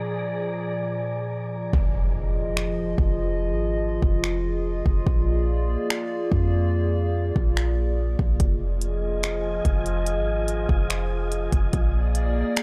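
Atmospheric cloud-rap hip hop in F dorian at 144 BPM with a half-time feel, melancholic and hazy, cut from a longer piece: a warbling, nostalgic, lo-fi and dark tape-like pad holds detuned chords alternating between Bb7 and Fm7 with chorus, reverb and sidechain pumping, opening with a filter sweep alongside an airy, breathy wind-like noise texture that returns at 8.9 seconds. At 1.7 seconds a deep, boomy 808-style bass and a glitchy, overdriven drum kit of deep kick, finger snaps and clicky hi-hats enter up front, with an electronic impact in the background, while the hats stay muted until 8.4 seconds. The sound is dry and gritty.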